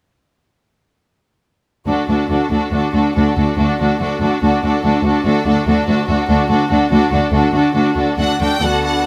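Light reverb surrounds a bowed string orchestra in this short cut from a longer movement. The piece is a quick, graceful and lively classical-period work in 4/4, played with a rubato feel. From 1.9 s, a violin section carries the melody with a smooth, even vibrato tone, while a second violin section adds an expressive line beneath it. Violas fill out the accompaniment with a rich sound and a softened top, and an up-front cello section anchors the bass on a D. The ensemble opens on a D chord, and the parts play together until about 9 s.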